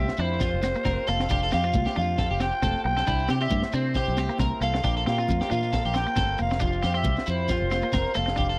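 A danceable, carefree highlife groove at 136 BPM in 4/4 swings its sixteenths lightly, driven by a crunchy breakbeat kit whose punchy kick and high-tuned snare sound saturated and dark, with a rolled-off top, alongside grainy shekere and bright, high-tuned congas played with soft hands in the background. Up front, a round, foam-muted fingered bass anchors the F major harmony as the chords move from Fsus2 to C at 3.1 seconds, Bbsus2 at 4.8 and back to Fsus2. Over this, a growling clarinet sings the melody in a raspy, breathy subtone with jazz-style vibrato, sitting forward as the solo voice. A twangy electric guitar at the edge of break-up picks arpeggios through analog chorus and slapback echo, while a clean, compressed second guitar adds accompaniment through spring reverb, and a vintage combo organ holds mellow chords with heavy vibrato behind everything. The dry, close small-room sound recalls a 1970s studio, and the passage is cut from a longer piece.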